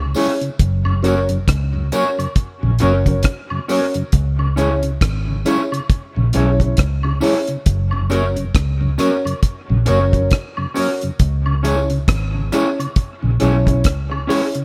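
A round, foam-muted fingered electric bass sits up front in this meditative, serious roots reggae excerpt, moving between F#1 and C#2 beside a deep, dry drum kit whose tight kick, hi-hat and rim click carry a dark, rolled-off top. The tempo is an unhurried 68 BPM in 4/4, with a 59% swing on the 16ths giving the groove a gentle lilt in C# dorian. The harmony rocks between C#m and F#, settling back on C#m at 11.2 seconds. A clean tonewheel organ adds a soft bed with audible key click and a slow rotary speaker, while a woody upright piano places boxy, long-sustaining stabs with audible action noise. An electric guitar at the edge of break-up adds a slightly gritty, fingered part treated with tape echo. Tambourine and woodblock sound distant, as if heard across a large room, and the overall mix carries little reverb.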